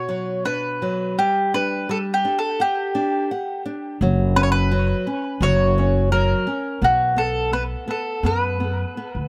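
A picked mandolin leads this short excerpt of a fado-style ballad in B minor, its doubled strings giving a round, up-front melody that sits between F#4 and C#5 and carries a touch of tape echo. Beneath it, a small-sounding nylon-string guitar is fingerpicked throughout, slightly further back in level, spanning B2 to F#5. At 4.0 seconds an upright bass joins, played pizzicato on steel strings with a woody, dark, growly tone low in its register. The mood is passionate and mournful, moving freely in rubato around 85 BPM in 4/4 through Bm, G5, F#sus4 and B5. Close, detailed microphones and very little reverb keep all three acoustic instruments intimate and present.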